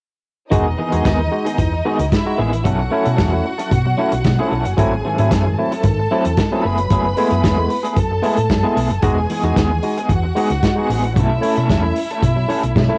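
Glamorous and joyful, this 113 BPM disco excerpt in E major pairs a punchy, muffled vintage drum kit and a round, dark hollow-body fingered bass with a barky tine electric piano, a twangy, slightly broken-up electric guitar with tremolo, and a lush, biting string section on the second line, all cycling through Emaj7, B9sus4, G#7b9b13 and F#m11 from 0.5 seconds onward in a light-reverb home cassette recording whose tape colouring touches every part except the bass.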